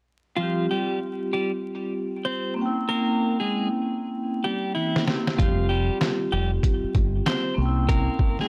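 A swung 96 BPM boom-bap hip-hop groove in 4/4 carries this dark, reflective fragment, where a clean, picked electric guitar melody with tape echo and a bright, ringing vibraphone with slow motor vibrato and cassette coloring share the opening from 0.4 s over Fsus2 and C7, before muffled, pitched-down sampler drums with a thumpy kick, handclaps and 12-bit grit arrive at 5.0 s, partway through a fill that runs until 5.4 s, and a round, punchy dub bass joins at 5.4 s, in a dry hardware sound flecked with vinyl crackle.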